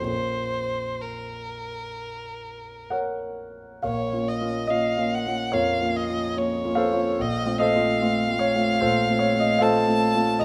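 This is a romantic classical duo for violin and grand piano, elegiac and solemn in mood, unfolding at an unhurried pace in four with a flexible, rubato feel. A single bowed violin carries the melody throughout, its tone rich and focused with a smooth top and expressive vibrato, placed up front. The concert grand piano supports it from start to finish, polished and present, with deep bass anchoring a warm accompaniment that reaches well up into the middle register. The opening phrase is stated and then begins again at 3.8 seconds, giving the passage a grave, repeating shape. Both instruments sit in a moderate recital hall reverb, and the music breaks off at 10.4 seconds as a short cut from a longer piece.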